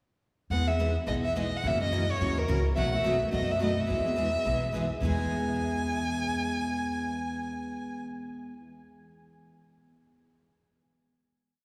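Acoustic string swing in the jazz manouche style: a brief, charming and lively piece at 213 BPM in E major that moves from Emaj7 through F#7 and B7 back to Emaj7, settling on a final chord at 5.0 seconds. A close, up-front bowed violin carries a motif-based melody of call phrases with vibrato, portamento and a soft attack, over a woody, thumpy pizzicato upright bass playing two-beat root and fifth with walk-ups. A bright, full-bodied jumbo guitar picks four to the bar with short accents on two and four, a second picked guitar sits in the background, and the recording is bathed in a wet cathedral reverb.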